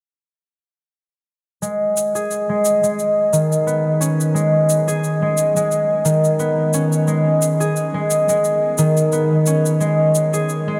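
A ringing, fingerpicked concert harp sits up front with arpeggios in the low and middle register, softened by a low-pass filter and a diffuse ambient delay, while a quieter, tape-warm electronic shaker, re-recorded in a small room, plays from 1.6 to 10.6 seconds in this meditative, mystical organic downtempo piece at 88 BPM in G# minor with a light 16th-note swing, moving from G#m to a rootless F#sus2 at 9.8 seconds, all of it soaked in a huge, dreamy reverb.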